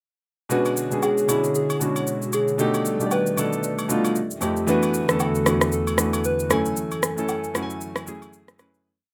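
A soulful, deep amapiano breakdown opens at 0.5 s with clear, intimate grand piano playing rootless rhythmic chords with grace notes and audible action noise, a hollow, flute-like pad with chorus, a round, keys-like FM synth lead with chorus tracing call-phrase motifs, and an up-front electronic shaker and rim click groove with a soft kick, joined at 0.7 s by an acoustic agogo bell and woodblock timeline, all in a rough home demo mix with wet studio reverb that fades out from 6.8 s.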